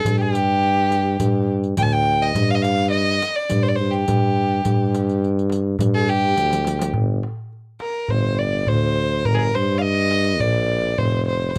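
A violin, tuba, darbuka and riq open together in this melancholic, hypnotic excerpt of Arabic maqam ensemble music, set in a steady, straight four. The violin carries the melody up front with a soft attack, airy sul tasto bowing and light vibrato, giving it an intimate, close sound. Beneath it, a solo tuba holds the bass with a punchy, pop-style tone and its own vibrato, while the clay-shelled darbuka adds natural-skin warmth and the riq's bright jingles sit lower in the mix. A drum fill leads into a new section at 7.0 s, where the harmony shifts and the riq drops out, returning only at the very end. The whole is a dry, close studio recording in a 1970s style, with little reverb.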